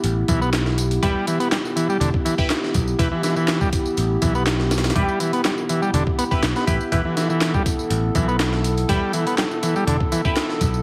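A buzzy, overdriven combo organ with light vibrato plays an up-front riff from 0.3 s, driving this funky, energetic breakbeat cut at 122 BPM in E minor pentatonic over a steady Em chord. A gritty, sampler-style drum kit with a thumpy kick and high-tuned snare, layered electronic tambourine and handclaps, and a growly, bright picked electric bass keep the groove moving, while a dark, detuned analog pad with chorus and sidechain pumping holds sustained chords underneath. From 1.0 s a nasal, band-passed sawtooth chord stab with phaser and delay sits in the background, and the whole cut carries a plate reverb, a heavily compressed radio-like sound and vinyl crackle.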